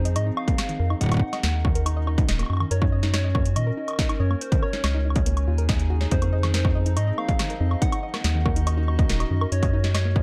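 This dark, warm production has a digital ambience, and its bass and distorted kick sit up front. It is a melancholic, cerebral IDM passage in straight 4/4, cut from a longer piece. A warbling, nostalgic pad holds detuned, lo-fi chords moving from Fm7 to Ebm7, Gb and Dbsus2. Above it, a soft struck synth lead with a keys-like, vintage FM tone plays the melody through chorus, tremolo and dub echo, while a gentle, nasal pluck traces arpeggios with chorus and delay in the background. Underneath, a round, deep analog bass anchors the low end. A booming analog drum machine with crisp snare, metallic hats and woodblock enters at 0.1 seconds, re-recorded in a large room, and the electronic kick joins at 0.5 seconds.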